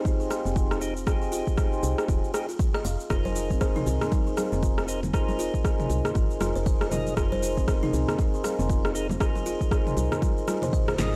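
Afro house excerpt at 118 BPM with a swung, spiritual glow, where a buzzing, thumb-plucked kalimba spins arpeggios and a mellow tonewheel organ on slow rotary speaker places percussive stabs, both pumping under sidechain and trailing tape echo, over Fm9 moving to Abadd9/F at 3.1 seconds, while an overdriven, up-front deep kick and a gritty deep house kit with punchy snare, rim click, shaker and toms play alongside a round, woody FM bass, bright hard-handed congas join in the background at 3.2 seconds, and a band accent at 10.9 seconds and a drum fill at 11.0 seconds close the dry, hardware-rough recording.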